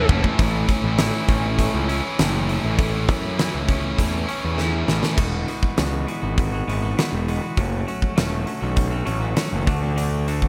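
Quiet-loud alternative rock at 100 BPM in A major, this cathartic, bittersweet passage from a longer piece opens with a drum fill and a tight, distorted guitar riff that stops at 5.2 seconds. A huge arena drum kit with a fat snare, punchy kick and bright cymbals sits up front beside a growly, fuzz-soaked picked bass, while a twangy, compressed clean guitar plays arpeggios through analog delay. A second fill leads into a new section at 5.2 seconds, moving through Eadd9, F#m and D under light reverb.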